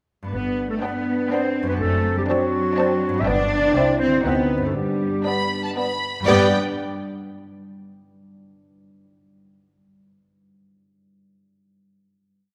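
A playful, whimsical cinematic film cue in G major, this short, mischievous piece moves at 122 BPM in a straight 3/4 and closes on a final chord at 6.3 seconds. A ringing, fingerpicked concert harp opens at 0.2 seconds with rolled chords and arpeggios, joined almost at once by a smooth-topped clarinet on a second line, soft-attacked French horns holding sustained chords, a focused, distant cello section doubling the tune at the octave, and a double bass section laying down pizzicato and sustained bass. From 0.8 seconds a rich, expressive violin section carries the melody, while a second violin section adds portamento and pizzicato in the background. A lush viola section and a roomy bassoon fill in the accompaniment, and a pure, hollow small flute group with a crisp attack plays after-beat chords. The harmony moves simply through G, D7/F#, C and D7b9 before settling home, and the whole cue sits in the sizeable bloom of a scoring stage.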